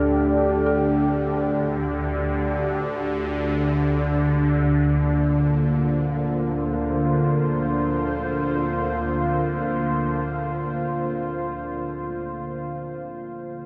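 Dark ambient drone in free time, vast and ominous, tuned slightly below standard pitch. A deep, moody pad of detuned sawtooth layers with a sub octave holds sustained chords, moving from a D5 sound to Bbadd9/D at 2.9 seconds, over a tense, string-like bowed drone in the low register that carries a noisy edge, vibrato and phaser. Far back, an eerie, inharmonic FM bell warbles through arpeggios with chorus, phaser and delay, all sunk in a huge, wet reverb with a long tail as this excerpt fades out from 8.1 seconds.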